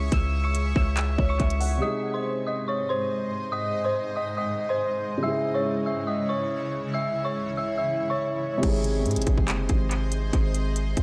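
An echo-heavy, lightly reverberant mix opens this melancholic, menacing trap cut at 141 BPM in a half-time feel, where an eerie, inharmonic synth bell with chorus, phaser and analog delay carries the melody over a soft, felt-muted upright piano and a cloudy, evolving granular pad, moving between C#m and G#. A punchy, heavy 808-style bass and a crisp, up-front trap kit of kick, hi-hat, handclaps and crash sound at the start, drop out by 1.8 seconds, and return at 8.6 seconds as the bell stops. From 8.6 seconds a filter sweep shapes the muffled piano to the end of the fragment.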